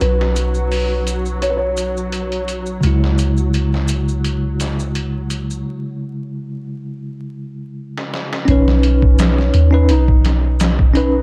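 Trip hop at 85 BPM with a gentle swing, smoky and dark in a crackling vinyl haze, built on a deep, round 808-style bass, a thumpy, pitched-down and overdriven sampler drum kit with saturated maracas, and a bell-like tine electric piano with tremolo, while a felt-muted upright piano plays a mellow, boxy melody through tape echo, veiled con sordino strings and a nasal, reverberant bowed-like drone hold sustained tones until 5.7 seconds, and a break capped by a drum fill brings the piano back at 8.5 seconds as the chords move between Badd9 and C#m.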